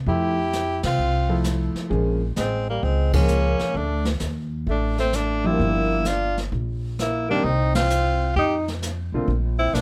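A clear, up-front tenor saxophone with light vibrato and scooped notes carries the melody over a subtoned, distant second tenor, an intimate grand piano with audible action noise, woody pizzicato upright bass and roomy brushed drums with dark cymbals in this warm, relaxed small-group swing excerpt, which moves from Fmaj9 through Bbm7 and Gm7 with band accents at 0.8, 3.1 and 7.7 seconds.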